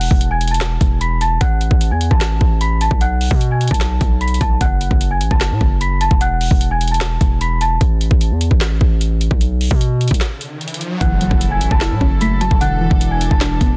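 A dry, dense and heavily limited mix frames this melancholic, menacing half-time trap excerpt at 150 BPM, with a knocking kick, woody snare, handclaps and metallic hats sitting up front beside a saturated, aggressive distorted 808-style bass. A worn celesta, bell-like and slightly out of tune behind a low-pass filter, carries the melody over Esus4, Asus2 and B5 until 7.8 seconds, and a background riser then builds into an impact at 11.0 seconds. From there the celesta returns alongside a dark, chorused soft round pluck and a distant, floating bowed string section holding sustained chords on F#m7 and E7sus4.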